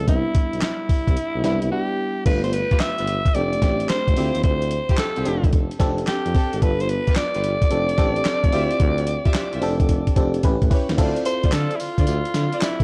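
Punchy and bouncy, this new jack swing R&B excerpt moves at 110 BPM with a swung sixteenth feel in D dorian, led by a raspy, growling alto saxophone up front over a glassy, bell-like FM electric piano with chorus and a close-miked tuba carrying the bass line with vibrato. A gritty, compressed sampler-style drum kit with a thumpy kick, fat snare, handclaps, tambourine, hi-hat and crash sits prominently in the dark, dry mix, breaking briefly at 1.7 seconds and playing a fill near 9.9 seconds. From 2.7 seconds a lush, woody string section adds bowed stabs in the background as the chords cycle through G7, F69 and Dm11, then pass through A9 before landing on Dm7.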